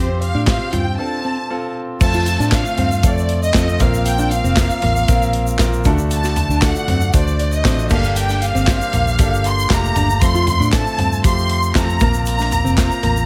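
A lush, distant violin section sings the melody over brilliant grand piano, a full-bodied fingerpicked acoustic guitar riff tucked in the background and a round, foam-muted electric bass, with a punchy, mid-forward studio drum kit of kick, snare, hi-hat, toms, crash and handclaps joining at 0.2 seconds, a brief break from 1.0 to 2.0 seconds, and a grainy shaker entering at 2.0 seconds in this anthemic, uplifting piano-driven pop excerpt bathed in light studio reverb.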